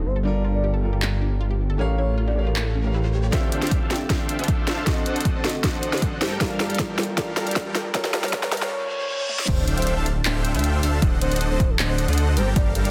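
A half-time future bass groove in 4/4 pumps beneath a dreamy, emotional mood: a dark, round, octave-layered synth lead carries the melody in the background over boxy grand piano chords, a short detuned unison pluck plays arpeggios until 3.3 s, and a thick, saturated detuned saw bass sits up front. A trap kit with a sharp snare and bright hats enters at 1.0 s, and a very quiet riser, reverse cymbal and sub drop lead into a filtered build-up, where a huge, compressed supersaw riff and a punchy, overdriven electronic kick arrive together at 3.3 s. The drop lands at 9.5 s with an impact as the piano stops, and the dense, heavily limited mix sits in light digital reverb.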